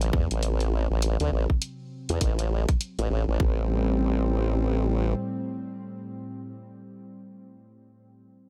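A swung 4/4 glitch hop groove at 101 BPM in A dorian, playful and funky, built on a tight, up-front electronic kick and a layered electronic hi-hat that drop out by 3.6 seconds, alongside a saturated, wobbling formant-sweep bass with chorus and a smooth, detuned analog pad with chorus and sidechain pumping sustaining Am and then Am7 from 3.4 seconds, all in a light digital ambience, cut from a longer piece.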